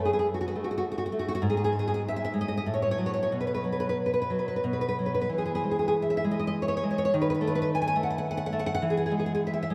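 A fingerpicked nylon-string guitar opens this short passage, lifted from a longer romantic piece for solo classical guitar, its tone warm and placed up front. The mood is tender and nostalgic, moving in a lilting three-beat metre with a free, rubato feel that lets the phrases breathe. The guitar plays alone throughout, ranging from low F#2 up to G#5, colored by a subtle chorus and a diffuse ambient delay. Its harmony drifts from F#madd9 through a brief chordless moment at 1.4 seconds, then on to a diminished chord before settling back on E near the close at 8.8 seconds. A wet church reverb with a long tail surrounds the playing, giving the whole mix a dreamy, soaked atmosphere.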